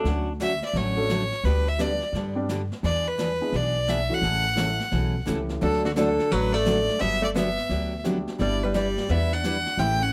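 A brisk 172 BPM swing in 4/4 drives this playful western swing excerpt in D major, with a thumpy, woody upright bass up front, brushed snare and hi-hat sitting in the background, a bright dreadnought acoustic guitar with audible finger squeak, and a polished upright piano comping through the chord changes. Over them, a clear, earthy fiddle carries the melody with light vibrato and a plate-reverb sheen. At 5.6 seconds a clean, compressed hollow-body electric guitar adds a second line, and the whole band sits in a moderate club room.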